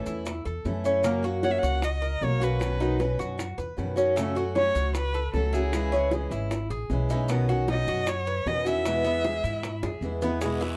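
Relaxed and sunny, this brief cut from a longer Cuban son and guajira piece moves at 154 BPM in E major, led up front by a focused, boxy bowed violin singing with vibrato over a picked ladder-braced acoustic guitar whose finger squeaks add intimacy. A metallic Cuban tres weaves double-string arpeggios, while a woody pizzicato upright bass anchors the low end and round, low-tuned bongos and grainy, mellow maracas sit in the background. A drum fill from 9.8 s leads into a raspy, saturated guiro entering at 10.4 s, all within a moderate small-room ambience.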